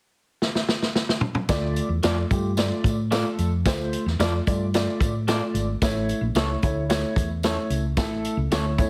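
Uptempo 1960s-style soul in D minor at 111 BPM, urgent and passionate, this excerpt opens with a drum fill on a small-room vintage kit with a punchy kick at 0.4 seconds before the band arrives at 1.5 seconds. A woody upright piano and a round, hollow-body fingered bass sit up front over the Dm-to-A changes, while a jingly tambourine rattles in the background and, from 2.0 seconds, a slightly broken-up electric guitar through a small old amp adds lo-fi stabs. Light reverb and heavy multiband compression give the whole a squeezed, radio-like sound.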